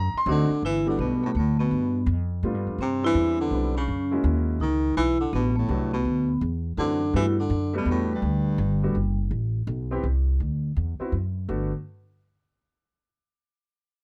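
Relaxed and warm, this cut from a longer small-group swing and bop piece moves in a swung 3/4 at 166 BPM in G major, tuned to A4 = 444 Hz. A woody, up-front pizzicato upright bass and a dark, mellow, vintage-sounding baby grand piano accompany throughout. From 0.3 to 9.2 seconds a ringing, metallic vibraphone played with medium mallets and the motor off carries the melody in a boxy small-room sound, over a baritone saxophone second line with jazz vibrato, while close, detailed microphones with little reverb follow the chords through Gmaj7, Cmaj7, F#7 and Bm7 to a Gmaj7 at 11.5 seconds.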